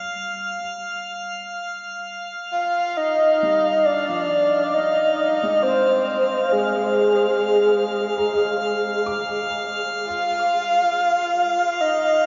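In a straight, unhurried 4/4, this melancholic yet serene ambient fragment opens on a glassy, drifting harmonics texture with chorus, joined at 2.5 seconds by an up-front, breathy flute-like synth lead with vibrato, chorus and delay, and at 3.4 seconds by a soft felt-muted upright piano fading in with intimate, mellow arpeggios, audible action noise and delay in the background, all bathed in a huge reverb and a dreamy mix that moves from Abmaj7 to Ebsus2/F.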